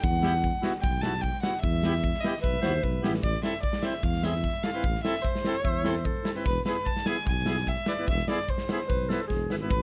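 Bittersweet yet festive, this clip of straight-feel klezmer at 149 BPM in 4/4 sets a biting, nasal violin melody up front over a dark tuba bass, a reedy, hollow accordion and a big acoustic rock drum kit with a punchy kick, while a breathy clarinet with subtone and vibrato adds brief second-line phrases at 2.4, 5.6 and 8.9 s; the music moves from E harmonic minor into A harmonic minor at 3.2 s, and a drum fill arrives at 9.3 s in a close, detailed and nearly dry sound.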